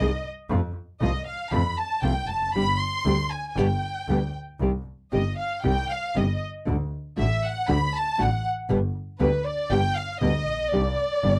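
Tango in C harmonic minor at 118 BPM, played with a rubato feel and a dramatic, melancholic mood, heard as a short cut from a longer piece. A lush, expressive bowed violin section with vibrato sits up front as the featured voice, over thumb-plucked classical nylon-string guitar accompaniment and a focused, clear bowed double bass, also with vibrato. The sound is dry and close, like a 1970s studio recording, with little reverb, and the harmony moves through Gsus4, G, Cm, D and G before settling on Cmadd9 at 10.7 seconds.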